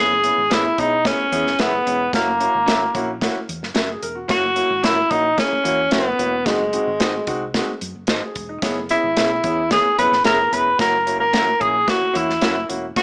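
Uptempo 1960s-style soul at 111 BPM in F# mixolydian, this danceable, joyful clip is led by an up-front tenor saxophone playing the melody in a breathy, intimate, vintage subtone with vibrato, scooped notes and a soft attack, over a clear baby grand piano and a dark, round hollow-body electric bass. An airy, polished acoustic drum kit with a punchy kick and medium-tuned snare comes in at 0.2 seconds, and at 0.5 seconds a slightly broken-up electric guitar through a small old amp adds picked stabs in the background. The harmony moves between C#m7/F#, F#7 and G#7/F#, and a moderate large-studio reverb sits over a small-speaker sound across the whole track.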